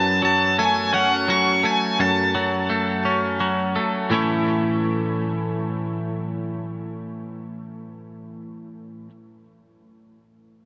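A huge, wet ambient reverb hangs over this short rock excerpt in A major, a hopeful, soaring passage in a slow 6/8 at 56 BPM with a straight feel. Up front, a bright, twangy twelve-string electric guitar picks compressed, clean arpeggios from F#2 to E4 through subtle chorus and digital delay, moving from F#m to A at 4.1 seconds. A dark octave-fuzz lead guitar, distorted and echoed, sings a high melody between F#5 and C#6 before stopping at 3.4 seconds, leaving the twelve-string to ring on until 9.1 seconds.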